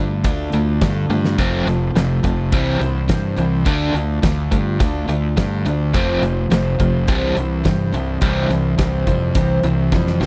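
A swaggering, driving classic rock excerpt at 105 BPM opens on a Dm–F–C progression, with a shimmering, octave-doubled twelve-string acoustic guitar, a bright semi-hollow guitar riff with tremolo, a sludgy distorted guitar in the background and an up-front fuzz bass, before a huge arena drum kit with a fat snare and punchy kick enters at 0.2 seconds, throws a fill at 1.1 seconds and another from 9.9 seconds, all in a dry, close 1970s-style studio sound.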